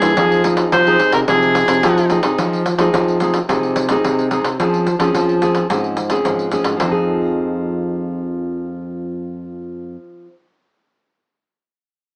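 This short cut from a longer samba and choro piece moves at 109 BPM in a straight 4/4, in F minor, with a nostalgic, yearning mood. A pandeiro, jingly and compressed with a saturated edge and played with hard hands, drives the groove until 6.9 seconds. A bright, fingerpicked nylon-string guitar supplies the accompaniment over Fm7 and Dbmaj7/F chords, its fresh strings sounding full-bodied, with an audible finger squeak. A second nylon-string guitar, dark and thumb-plucked, carries the bass line up front. The soprano saxophone opens with a punchy, forceful jazz-style solo phrase with light vibrato, but it lasts only until 2.1 seconds. The parts sit in moderate studio reverb, and the whole has a small-speaker character.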